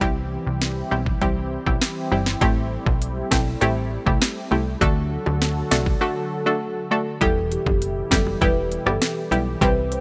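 Up front, an overdriven electronic island pop drum kit drives this bouncy, sultry dancehall excerpt at 100 BPM in E minor, its knocking kick, sharp snare, rim click and crisp hats sitting at the front of the mix. Beside it, a round, full-bodied analog pluck built from sawtooth and a noise layer carries the accompaniment with a fast attack, short decay, filter sweep and chorus, while a funky, plucky analog bass with a moving notch fills the low end. Underneath, a smooth, detuned sawtooth pad holds sustained chords with a slow attack, chorus and sidechain pumping, moving through C, Am7 and D. Low-tuned, close and dry bongos slip in at 2.4 seconds, very quiet in the background. At 7.2 seconds the harmony settles on Em and a mellow marimba played with soft mallets takes up the melody, all set in a light reverb.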